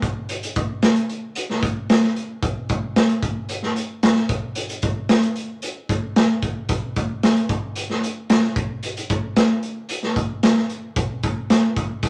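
A gritty, saturated sound with a rolled-off top and light reverb puts this short soul drum excerpt up front in a small, pumping room. The acoustic kit plays alone from start to finish in a straight 4/4 feel, its punchy kick, medium-tuned snare and hi-hat carrying a danceable, joyful groove. At 11.0 seconds the pattern moves into a new section that closes the clip at 12.1 seconds.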